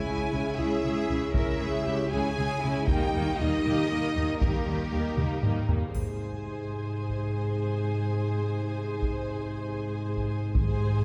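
Taiko drums struck with hard sticks enter at 1.3 s and drive this excerpt of an adventurous, heroic, epic orchestral film score in Ab major, moving at 78 BPM in a straight 6/8. Beneath the drums, bowed string sections sing with smooth vibrato: violins carry the melody over a distant second violin line, violas and close, rich cellos fill out the accompaniment and bass, and woody double basses add depth. Dark French horns hold sustained chords from further back in a reverberant scoring stage, and after a drum fill a very quiet triangle and bright cymbal swell joins at 5.9 s as the harmony resolves to Ab.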